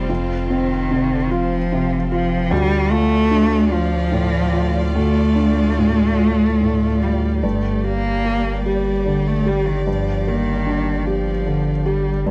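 A dry, close studio sound in a 1970s style frames this melancholic, reflective fragment of neoclassical piano and strings in 6/8 with a free, rubato feel. A felt-muted upright piano gives soft, intimate accompaniment, while an expressive solo cello, rich and up front with vibrato and portamento, carries a second line over a chamber string section holding focused, bowed sustained chords. Beneath them a saturated sub bass sits deep and thick, its sine tone sustained, as the harmony moves from F5 through Dm to Gm.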